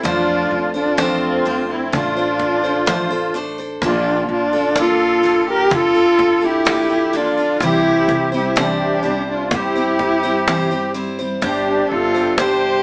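Heard through a small speaker sound with a moderate studio reverb, this short excerpt from a longer piece is peaceful, pastoral acoustic folk for a small band in a straight 4/4. A dark, close bowed cello carries the melody up front, singing with vibrato and portamento in an expressive single-player voice. Just above it, a reedy musette accordion adds a shimmering second line, also sitting up front, while a bright, full-bodied jumbo steel-string guitar supplies picked accompaniment. Underneath, a pizzicato upright bass with gut strings gives a woody, thumpy low end, and a cajon played with hard hands adds faint snares from a small room. The harmony moves from Dm7/F through Bbmaj7 and C to a Gsus4, where a mellow, breathing pedal harmonium enters in the background at 11.4 seconds with sustained chords.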